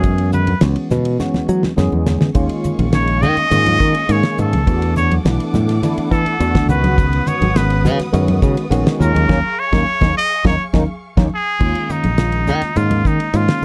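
A nasal, straight-muted trumpet leads this intense, funky electric jazz fusion excerpt in Eb minor at 104 BPM, soloing up front with vibrato and scooped notes over shifting ninth-sus chords. Beneath it, a growly, punchy fingered electric bass and a damped 70s drum kit with a fat snare and tight kick drive a straight 4/4 feel, with drum fills along the way and a band accent from 9.3 seconds. A clean tine electric piano with analog chorus supplies accompaniment, soft-handed congas sit in the background, and a lush bowed string section holds sustained chords from 2.4 to 11.6 seconds, all within a dry, dark production.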